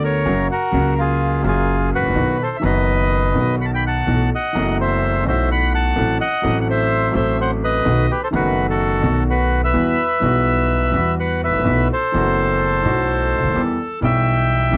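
Tango at 127 BPM in 4/4, played with a rubato feel and a dramatic, melancholic mood, in a short section cut from a longer piece. The bandoneon carries the melody throughout, its reedy, dark, smooth tone sitting up front. A concert grand piano accompanies with a deep bass, a boxy character and long sustain, also close and present. Beneath them, an upright bass on gut strings is plucked pizzicato, giving a woody, thumpy low end. The harmony moves from F# and B through suspended and diminished colours to B7, touching Emadd9 before settling on Em at 13.6 seconds. A moderate booth ambience keeps the sound intimate and close.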